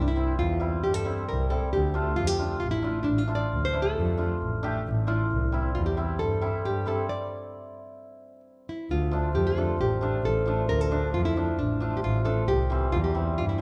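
Klezmer in D minor at 134 BPM, a bittersweet, soulful excerpt from a longer piece in which a dark, fingerpicked nylon-string guitar carries the melody up front, finger squeaks audible, over the mellow, shimmering ring of a hammered dulcimer. A bowed double bass with smooth, even vibrato anchors the low end, and the whole ensemble halts together from 7.1 to 8.9 seconds before the opening phrase returns on D minor. A moderate recital hall reverb gives the trio an open, resonant space.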